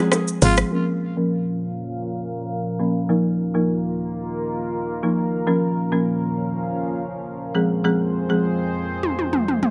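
A lightly reverberant, mellow and sultry afrobeats fragment in Bb minor at 101 BPM opens with a brief break in which overdriven deep house drums, very quiet ringing bongos and congas, a punchy woody log drum bass and a raspy, growling trumpet note sound over a dry, rustic marimba; a deep, moody ambient pad with chorus enters at 1.2 seconds and sustains through a filter sweep over Bbm, Ebsus2 and Fm until the drums return for a fill at 9.0 seconds.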